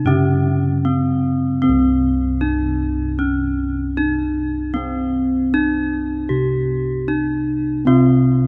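A rough home demo with light reverb and small-room ambience frames this short, stately Javanese gamelan fragment, moving at 77 BPM in a straight 4/4 and tuned to A4 = 436 Hz. Up front, a bright, mid-forward bronze metallophone struck with a horn mallet rings out the melody throughout, while round, beating bossed gongs carry the bass. A second, boxier and warmer metallophone plays accompaniment only until 1.7 seconds, then returns at 7.9 seconds for the closing moments.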